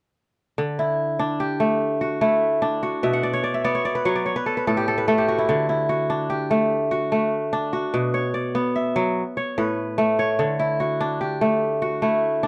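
A dark production with light reverb frames this hypnotic, flowing West African traditional excerpt in D major at 98 BPM in 12/8, where a solo kora, crisp, ringing and up front, plays fingerpicked arpeggios from 0.6 to 12.5 seconds, breaks into a fill between 3.0 and 5.5 seconds, and moves through D, B5, Bm and A.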